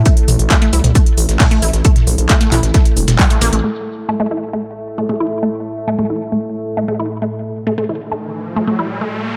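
A gritty, saturated synth bass and a deep, moody ambient pad with chorus open this intense, driving peak-time techno excerpt, joined at once by a squelchy, detuned blip pluck riff through phaser and delay, an overdriven electronic kick up front, a techno drum kit of smooth hats, handclaps and toms, and a dusty, tape-toned sampler-style kit of hi-hat, shaker and snare in the background, with sidechain pumping on the other parts. The kick drops out at 3.3 seconds, and at 3.6 seconds the bass and remaining drums stop, leaving the dark, evolving pad and the bright resonant pluck, until an electronic riser enters at 7.9 seconds. The mix is dry and loud.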